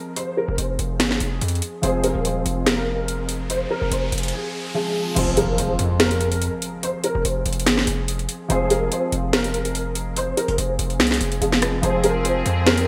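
Overdriven trap drums sit up front with a sharp snare, metallic hi-hats, rim clicks and crashes treated with gated reverb, while a punchy, heavy 808 bass enters at 0.5 seconds in this brooding, melancholic half-time trap cut at 144 BPM in F minor. A soft, boxy felt-muted upright piano carries the melody through ensemble chorus and digital delay over a mellow baby grand accompaniment with long sustain, and an electronic riser and impact mark the brief break into the second section at 5.2 seconds. A distant, smooth symphonic string section adds sustained bowed chords from 11.8 seconds, all set in a lush hall with a bright 1980s-style digital sheen.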